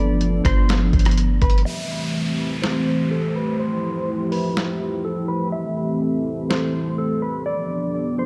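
Over a half-time groove from a muffled, pitched-down sampler kit with a thumpy kick, a medium-tuned snare, hi-hat and rim click, this short cut of ethereal, spacious cloud-rap opens with a deep, round 808 bass that sounds only until 1.6 seconds. A moody, detuned analog pad with a slow attack and sidechain pumping holds sustained chords moving from G7 through Am7 and Fmaj9, while a clean, fingered electric guitar carries a mellow melody through lush chorus and tape echo. An electronic downlifter appears at 1.7 seconds as a filter sweep begins, all set in a dreamy hall-reverb haze.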